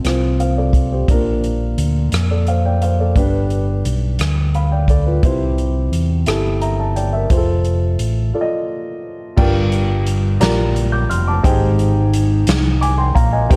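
A round, amped fingered electric bass sits up front in this short cut from a longer slow gospel piece, anchoring a jubilant, hopeful mood in a straight 6/8. A dark upright piano with a mellow, woody, natural tone carries the accompaniment across a broad range. A swinging big-band drum kit, airy and polished with a hall-like quality, adds crash cymbal, hi-hat, rim click, a medium-tuned snare and a punchy kick. The harmony moves from F through Bb, G and C back to F, and a break at 8.3 seconds leads into a new section at 9.4 seconds built on Gm7 and Abmaj7. Studio reverb gives the whole production a dusky, rounded glow.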